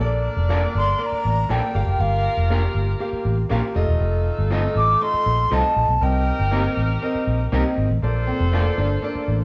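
A breathy wooden flute carries the melody from 0.8 to 6.5 seconds, its vibrato and tongued notes sounding distant yet up front, over an uplifting, joyful soul groove at 120 BPM in Bb major that moves from Bbmaj7 through Gm7, F7 and Cm7. A dark, round, foam-muted fingered electric bass sits prominently beneath a clear grand piano with audible action noise and long sustain, while a mellow vintage saxophone section plays a second line and a slightly broken-up electric guitar through a small old amp adds picked stabs. At 8.3 seconds a compressed guitar riff with phaser appears, and the whole band plays live in one room with wet stone reverb.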